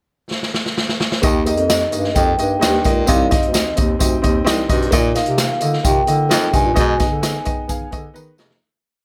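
A ringing, metallic vibraphone played with soft mallets carries a motif-based melody through this joyful, danceable 1960s-style soul piece, which opens with a drum fill at 0.3 seconds before the band arrives at 1.2 seconds, with the vibraphone joining at 1.5 seconds. A mellow bass clarinet with light vibrato plays a syncopated, jazz-style bass line with slides and chromatic approach notes, while a clear, present baritone saxophone punctuates in its low register, and a woody, slightly detuned upright piano plays eighth-note chords and adds short fills near the end. The roomy, distant drum kit drives a backbeat groove with a boomy kick, a jingly tambourine marks every beat, and the dry-sounding track starts to fade at 6.8 seconds.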